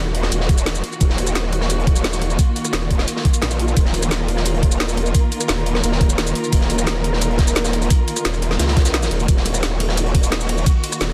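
Dark technical drum and bass, tense in a straight four, cut from a longer piece and held on one minor chord throughout. A growling, detuned bass wobbles up front with chorus and tube saturation, pumping against a knocking, overdriven electronic kick, while a muted string section holds veiled, con sordino chords roughened by vintage 12-bit sampler grit. Layered drum kits fill out the groove, one with a woody snare and bright hats, the other a crunchy, saturated breakbeat with a rolled-off top sitting in the background, all pressed into a dense, heavily limited mix with light small-room reverb.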